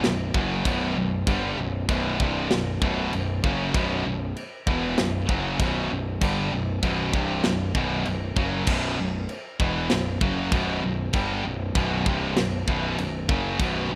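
Dark and heavy, this 14-second heavy metal fragment at 97 BPM in 4/4 sets a bright, overdriven picked guitar riff up front against a scooped high-gain guitar playing its own low riff over B5, while a growly fuzz-picked bass and a tight, gritty metal drum kit with china and crash cymbals, snug kick and medium-tuned snare fill out a rough, lightly reverberant home demo mix.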